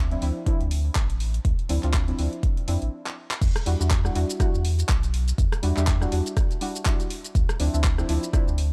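A deep electronic kick sits up front in this smooth, hypnotic deep house excerpt at 122 BPM in 4/4, arriving at 0.5 seconds with a tape-warm weight and the close character of a small room. Around it, a layered kit of crash cymbal, handclaps, hi-hat, rim click and shaker carries the same small-room re-recorded feel, swung at 57% on the sixteenths. A round sine sub bass holds sustained, mellow notes under a sidechain pump. Dark, nasal chord stabs mix detuned triangle, sawtooth and sine tones into soft filter plucks that decay through chorus and tape echo, moving from Dm9 to Em9 and back in E phrygian. After a stop at 2.9 seconds and a short drum fill, the drop lands at 3.4 seconds. The excerpt has a dry, gritty hardware sound set in a digital ambience.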